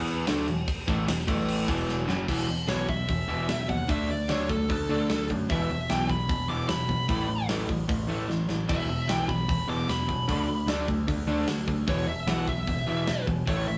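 Recorded as a band playing live in a small room with light reverb, this rowdy, rebellious punk rock excerpt at 150 BPM pairs two overdriven, picked electric guitar riffs (one warm, the other bright, compressed and set in the background) with a growling, punchy overdriven bass and an up-front, mid-forward rock drum kit with a rolled-off top, all churning over E5, A5 and D5 chords until a drum fill at 1.9 seconds launches a dark, distorted, bluesy lead guitar solo at 2.3 seconds, with a second fill at 8.3 seconds.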